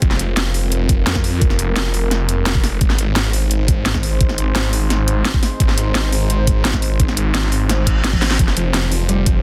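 Dark technical drum and bass at 172 BPM, futuristic and tense, built on a knocking, overdriven electronic kick and a layered kit with cracking snare, bright hats and toms up front, a snarling, detuned sawtooth bass that growls with distortion, tube saturation and sidechain pumping, and a deep, moody analog pad holding sustained chords through chorus and phaser over Fm and Ab. A background reverse cymbal rises from 7.8 seconds as a drum fill hits at 8.1 seconds, and a clean, fingered electric guitar enters at 8.4 seconds with delayed arpeggios, all in a dry, dense, heavily limited mix cut from a longer piece.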